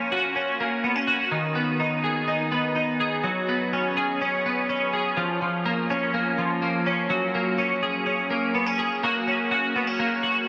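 Moving in a straight 4/4 at 124 BPM, this short indie pop excerpt features a lone twelve-string electric guitar, bright, twangy and up front, its clean picked tone compressed and shimmering through analog chorus across a D#3 to G#4 range. The chords pass from F#/A# through G#m, C#7sus4, A#m and F#add9 before settling on F# at 9.0 seconds, giving a bittersweet, restless mood. A huge ambient reverb with an 8.9-second tail soaks the mix in a dreamy wash.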